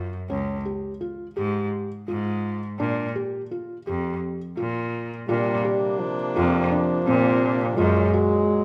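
In a straight 7/8 at 168 BPM (eighths), this playful, hopeful piece of contemporary chamber music in Bb mixolydian opens with a felt-muted upright piano spinning soft, intimate arpeggios over a biting, up-front bowed cello bass with light vibrato. At 5.3 s a mellow French horn enters with a smooth-topped second line in classical style, while a reedy, breathing harmonium sustains chords in the background as the harmony moves from Bbadd9 to Gbadd9. A moderate recital hall reverb surrounds the ensemble in this short cut from a longer work.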